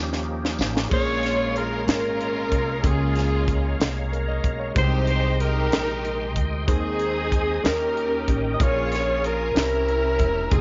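A slow gospel groove sways in 6/8. It opens with a drum fill from a tight, dry funk kit with bright cymbals and a high-tuned snare, and a jingly tambourine touches in briefly at 0.6 seconds. A woody, growly upright bass sits up front beneath jubilant, uplifting chords from a clear concert grand piano and a reedy tonewheel organ with key click, fast rotary speaker and chorus vibrato, both set back in the mix. A forceful, punchy alto saxophone with vibrato and tape echo sings the melody, joined at 0.9 seconds by a lush bowed string section, all in light studio reverb in this warm cut from a longer piece.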